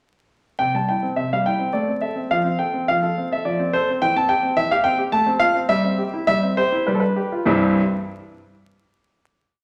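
A baby grand piano, close and up front with a natural, short-sustained tone, carries this whole classical-period sonatina alone, setting a single-line melody over a broken-chord bass in a lilting three-beat metre with gentle rubato. The elegant, playful phrase moves from C through A minor, F and a G7 before settling on a closing C chord at 7.5 seconds. A wet recital-hall reverb and a vinyl crackle give the sound a softly aged, vintage air.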